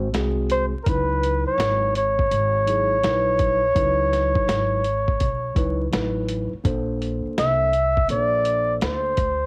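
A mellow flugelhorn carries the melody up front with light vibrato and a jazzy solo voice, entering at 0.5 seconds over a smoky, mellow jazz-hop groove at 83 BPM with a swung 16th-note feel. Beneath it, a gritty, compressed boom bap drum kit with a thumpy kick and medium-tuned snare sits forward in the mix, while a woody pizzicato upright bass with tube saturation and a clean, direct tine electric piano fill out the harmony, moving to an A#maj9 chord at 6.7 seconds. Light reverb, cassette-tape character on the drums and horn, and vinyl crackle give this fragment of a longer piece a homespun, lo-fi haze.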